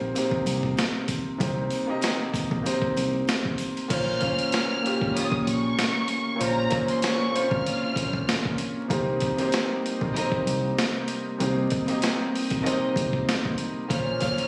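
A boom-bap hip-hop groove at 96 BPM in 4/4, swung on the sixteenths, sets a dark, tough mood in Bb dorian for this short cut from a longer piece. The sampler-style drum kit sits up front, compressed and gritty, with a thumpy kick, high-tuned snare, hi-hat and crash, re-recorded in a large room. A warm, intimate grand piano with audible action noise and long sustain carries the accompaniment from the start through a cassette-tape colour. Beneath it, a deep, round fingered electric bass holds the low end. Jingly sleigh bells ring faintly in the background for the opening seconds. At 3.9 seconds the harmony moves from Cm7 to Bbmadd9 as a distant, lush violin section takes the melody high up with vibrato and slapback echo, a reedy, lightly overdriven tonewheel organ with key click and slow rotary speaker holds chords in the background, and from 5.1 seconds a woody, dark string section adds bowed stabs, all under light reverb, vinyl crackle and the sound of a phone recording in the room.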